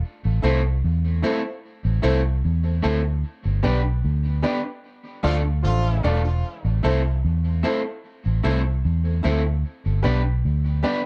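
A round, punchy muted electric bass sits up front from the first moment of this hypnotic, laid-back reggae excerpt, joined almost at once by a dark, slightly broken-up picked electric guitar with tape echo and a brilliant, woody, slightly detuned upright piano playing stabs. The band hits an accent between 3.2 and 6.4 seconds, and inside it a distant, roomy horn section with vibrato and octave doubling adds a tight, echoed second line from 5.2 to 6.2 seconds. The production is dark and warm, set in a small room ambience.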